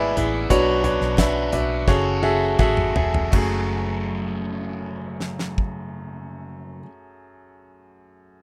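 A clear, intimate baby grand piano carries the accompaniment in this bittersweet, earnest piano-driven pop fragment in F# minor, its action noise audible and its notes ringing with long sustain over a straight 4/4 feel of about 80-91 BPM that slows through the first 3.3 seconds. A crunchy overdriven guitar riff with phaser, a round, foam-muted fingered electric bass and a dry 70s drum kit with a fat snare, tight kick and dark cymbals move through E/G#, Bmadd9 and F#madd9, the drums playing a fill from 1.9 seconds while a hollow group handclap sits barely audible in the background. The rough home demo mix carries little reverb, and the other parts drop out before the piano stops at 8.4 seconds.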